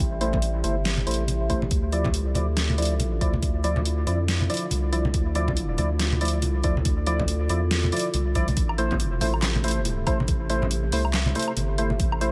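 Light digital ambience frames this dark, meditative deep dubstep passage, cut from a longer piece, moving at 140 BPM with a swung, half-time feel over chords of Am, Dmadd9 and back to Am. A thick, saturated sine sub bass sits up front beneath an overdriven knocking kick and a layered kit of deep snare, bright hats, handclaps and woodblock, while soft-handed congas with dub echo hover in the background. A hollow, organ-like stab with analog chorus and dub echo carries a filter sweep throughout, and a resonant, ring-modulated drone of sawtooth and sine tones with moving overtones holds sustained chords through chorus and reverb.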